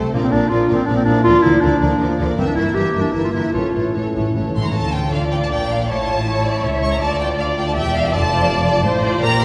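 Heard in the wet reverb of a concert hall, this cheerful, spirited classical-period orchestral movement in D minor moves quickly at 161 BPM in a rubato 3/4, with a rich, lush first violin section carrying the melody over a smooth second violin line, expressive violas with vibrato, and a distant bass of dark cellos with portamento and warm double basses, while a clear, up-front solo clarinet adds a second line and a dark French horn section holds background chords until 4.5 seconds, and timpani on medium mallets sound a fill from 3.5 seconds.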